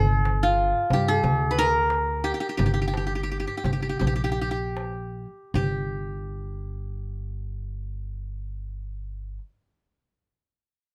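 Passionate and warm, this short cut from a longer Arabic maqam ensemble piece in straight 4/4 puts a bright-edged, fingerpicked qanun up front on the melody over a woody, thumpy pizzicato upright bass, while a clay-shell darbuka sits in the background from 0.3 to 5.9 seconds as the music slows during the opening section, all in a light reverb.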